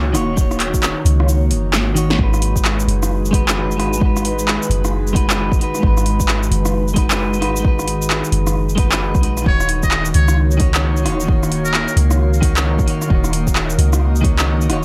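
Lightly reverberant and gritty, this melancholic, ghostly future garage excerpt in G# minor moves at 132 BPM with a swung 4/4 feel, as a clean picked electric guitar with 12-bit sampler grit and dub echo, a breathy detuned pad with chorus and phaser, and a round, dark 808-style bass all pump against an overdriven deep kick and a deep house kit of punchy snare, metallic hats, handclaps, rim click and shaker, the kick dropping out for a drum fill before 2.2 seconds, until a buzzy, brilliant muted trumpet with vibrato and dub echo plays a brief jazz-style solo from 9.5 seconds and a faint, glassy texture of drifting overtones settles into the background from 10.5 seconds.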